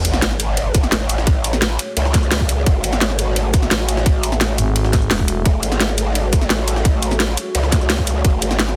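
An up-front, aggressive growl bass wobbles through its saturated, formant-filtered tone over an overdriven electronic kick, a cracking drum and bass kit with bright hats, a very quiet gritty pitched-up jungle sampler kit and a deep, moody detuned ambient pad pumping on sustained F#madd9 chords in this tense, dark technical drum and bass excerpt at 172 BPM in F# minor, with a background sub drop impact opening the first 1.3 seconds and a thick FM bass growl cutting in at 4.6 seconds in a dense, heavily limited mix.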